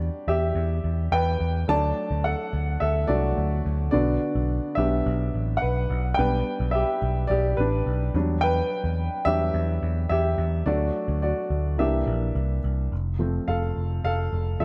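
Pop in an uplifting, warm mood at 107 BPM in a straight 4/4, this excerpt features an intimate grand piano, with its action noise audible, over a growly, punchy picked electric bass, both up front in light reverb and studio ambience as the chords move from Em7 through D, Bm and C7 before shifting to F at 12.9 seconds.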